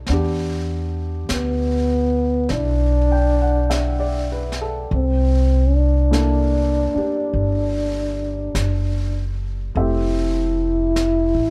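A dark, breathy trombone carries the solo melody up front from 1.3 seconds, its vibrato and scooped notes bathed in plate reverb, in this romantic, late-night jazz ballad excerpt with a slow swing feel. Beneath it, a woody pizzicato upright bass sits up front, a natural-sounding baby grand piano comps softly through Em7, C13 and Fmaj7, and a high-tuned snare and hi-hat played with brushes whisper in the background. The overall sound is intimate and dry.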